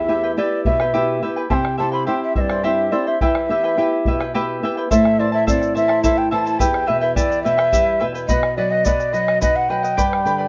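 A breathy, reedy large quena carries the wistful melody up front with vibrato, chiff and a touch of plate reverb, over shimmering fingerpicked charango on double strings and a warm, up-front flamenco guitar, with a deep, dark bombo joining at 0.7 seconds. This earthy Andean folk passage in E minor moves in a straight 6/8 at 71 BPM through Em, C, Am and B before landing on G. A grainy egg shaker adds a dry, close sparkle from 4.9 seconds in a moderate studio room with mellow, rolled-off highs, and the passage is cut from a longer piece.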